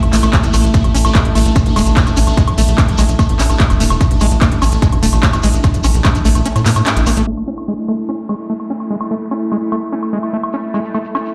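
Heard through light digital ambience and a large studio reverb, as if played over a big sound system in a bare room with a low-pass filter dulling the top, this hypnotic, driving psychedelic trance fragment runs at 147 BPM in 4/4. An overdriven, heavy electronic kick and a layered techno kit of handclaps, smooth hi-hats and woodblock drive the groove alongside an up-front, punchy sawtooth sequencer bass with a saturated, ring-modulated pluck, while a grainy, close and dry shekere sits in the background. Above them a squelchy, resonant acid line screams through distortion and tape echo, a bright, detuned gated texture pulses in time, and a warbling, nostalgic lo-fi pad hovers darkly; after the kick stops at 6.1 s and the bass at 7.2 s, a filter sweep moves across the acid line from 7.3 s as a faint downlifter slides beneath.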